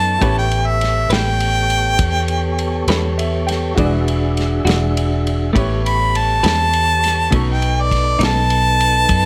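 A swaggering, soulful slow blues rolls along in 12/8 at 68 beats per minute, counted in dotted quarters with a straight feel, in a short cut from a longer piece. Up front, an overdriven harmonica carries the melody as a solo throughout, its warm, jazz-styled voice colored by vibrato, tongue slaps and scooped notes. A dark, round, foam-muted electric bass sits close beside it, while a soul drum kit entering at 0.2 seconds plays kick, snare and ride from a small room, with dusky cymbals and a tight kick. A mellow tonewheel organ holds sustained chords through a slow rotary speaker with audible key click, and a clean, compressed semi-hollow guitar picks accompaniment with tremolo until 8.4 seconds. Further back, a bright, woody upright piano comps with audible action noise and slips in a fill at 2.9 seconds, over changes that move from A9 to E9, back to A9 and on to B9, under a light reverb.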